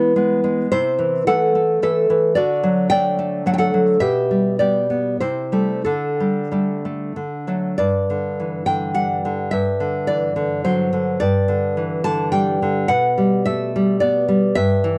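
A dark production with light reverb frames a single nylon-string guitar, heard up front with a warm, intimate tone. This is a romantic piece for solo classical guitar in G major and 3/4 time, moving with a rubato feel between 89 and 114 BPM. The fingerpicked guitar spans from G2 to A5 and plays entirely on its own. The opening phrase passes through E, Am/C, D and G/B before settling on Dsus4 and D, and at 7.8 s a new passage begins that alternates between G5 and D7/G and comes to rest on G/B. The mood is passionate yet private, and the 15-second fragment is cut from a longer piece.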